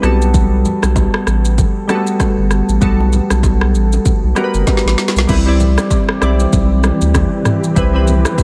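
A dreamy mix soaked in plate reverb wraps this breezy, sunny afrobeats excerpt, cut from a longer piece, in a swinging groove. Up front, an electronic afro-pop drum kit sets a deep kick against a woody snare, with rim clicks, shaker, crash cymbal and toms, while a thick, saturated sub bass with a fast attack holds down the low end. Glassy digital keys, wave-folded and treated with chorus and a filter sweep, play decaying accompaniment chords that move from Gmaj9 to Cmaj7 as the second section arrives after a drum fill ending at 5.3 seconds. Very quiet acoustic congas and bongos, struck with hard hands in a small room, ring beneath the kit from just after the start. At 6.2 seconds a mellow granular cloud pad drifts in behind the band, its detuned, evolving chords slowly blooming and blurring into their own built-in reverb.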